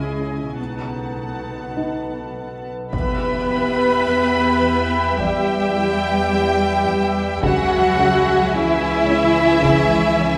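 Mysterious and ominous, this slow cinematic suspense cue at 53 BPM in E dorian places a focused, up-front violin melody over a distant, darker second violin line, smooth and even violas, an ethereal glass harmonica, warm and shadowy cello sections, woody double basses, a detuned organ-like drone with chorus, and a felt-muted upright piano, while a bright vintage clarinet sounds only until 2.3 seconds before French horns, heavy-stick taiko, a huge impact and a high violin texture enter at 2.9 seconds, the whole passage set in a wet scoring-stage reverb.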